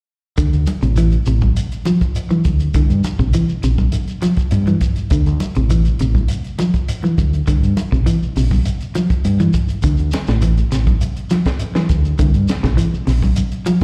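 Defiant and driving, this afrobeat excerpt, caught live through a venue's PA with recital-hall reverb, sets picked clean electric guitar arpeggios with slapback echo over a round, punchy, up-front fingered bass, a compact cocktail kit with a high-tuned snare and rolled-off top, a grainy close shekere, and bright, hard-handed congas entering at 0.7 seconds, all circling between D7sus2 and C9 chords, with one pass landing on Dsus2.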